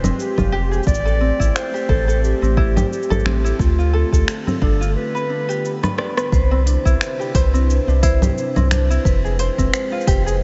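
Warm and hopeful, this folktronica excerpt sets fingerpicked ukulele arpeggios, a round analog bass and a warbling, nostalgic pad under a dark, soft-edged clarinet melody that gives way at 6.3 seconds to a ringing vibraphone line, while overdriven electronic drums with congas, cabasa, finger snaps and a deep kick, re-recorded in a large room, carry a break and a fill, all within a dreamy, reverb-soaked mix.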